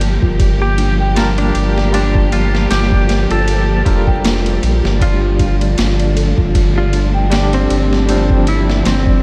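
A round, deep analog bass with tube saturation sits up front in this smoky, cinematic trip hop excerpt in G minor at 78 BPM, joined by a gritty, pitched-down boom bap drum kit with thumpy kick, high-tuned snare and ride, a bell-like tine electric piano with tremolo and tape echo, a rich bowed string section and a delicate, slightly out-of-tune music box in the background, a twangy slide lap steel melody with chorus and dub echo entering at 0.6 seconds, and an airy, wind-like noise texture from 1.1 seconds, all moving from Gm9 to Dm/G over light reverb and vinyl crackle.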